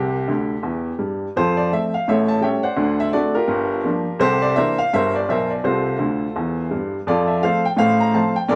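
A clear, woody upright piano carries this short stride jazz piece alone, sitting up front with an open, long-sustaining tone that spans from G1 up to Bb5. The mood is playful and exuberant, moving at 168 BPM in 4/4 with a swung eighth-note feel in F major. The harmony runs from C to F, then through A7, D7, Gm7 and C13 before settling back through F/C and C to F and F/A. Brief piano fills appear at 0.3 seconds and again at 6.0 seconds. The sound captures a live performance in a large studio, with moderate reverb giving the instrument a sense of space. The recording is cut from a longer piece.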